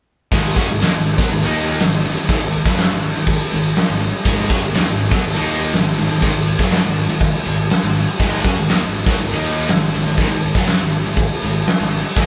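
Opening at 0.3 s on a G#5 power chord, this aggressive, heavy hard rock excerpt drives at 122 BPM in a straight 4/4, with an up-front acoustic drum kit of fat snare, punchy kick and crash cymbal in a bright stone room, backed by three picked electric guitar riffs (a very quiet overdriven cranked stack, a double-tracked, compressed distorted guitar, and a scooped high-gain one) and a fuzzy, overdriven picked bass, all sounding like a band playing live in one room with moderate reverb and a dark top end.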